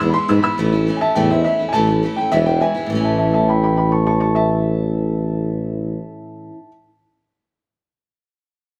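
A punchy, up-front tuba carries the bass with light vibrato in a pop style, stopping at 6.0 s, in this short, upbeat and rowdy rockabilly cut in straight 4/4. A dark, woody upright piano sings the melody up front, while a bright, auditorium-toned steel-string acoustic guitar picks the accompaniment with audible finger squeak as the chords move between E and A. The band plays live together in one large studio, with moderate reverb filling out the sound.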